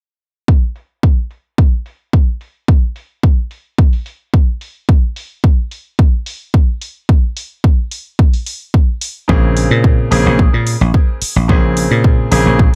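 A punchy, overdriven electronic kick drum sits up front from 0.5 seconds, setting a straight nu-disco pulse with a sleek, cosmic mood. Layered electronic hi-hats join it, their bright tops run through the same overdrive and softened by a low-pass filter. For most of this excerpt the drums carry the track alone over an unchorded stretch, until a Bbm9 chord arrives at 9.3 seconds. At that moment a dry, thumbed slap bass enters, its foam-muted tone direct and forward, alongside a brilliant concert grand piano with a natural sound and deep low end. The piano pumps against the kick through sidechaining and trails off in tape echo, while the whole piece sits in an echo-heavy digital ambience.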